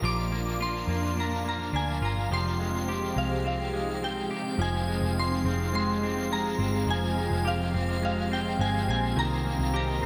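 Hazy and ethereal, this dream pop excerpt drifts at 105 BPM in F minor, with a shimmering FM bell carrying the melody up front through ensemble chorus, tremolo and tape echo. An overdriven electric guitar with harmonic tremolo, a bright, hollow-body semi-hollow guitar picking chorused, echoing arpeggios, and a thick, detuned unison pad with phaser in the background surround a dark, foam-muted picked bass, while a very quiet, ringing vibraphone with slow motor vibrato returns at 3.7 seconds. A huge ambient reverb bathes the mix as the chords move from Bb to Fmadd9 and settle on Cm7 at 9.2 seconds.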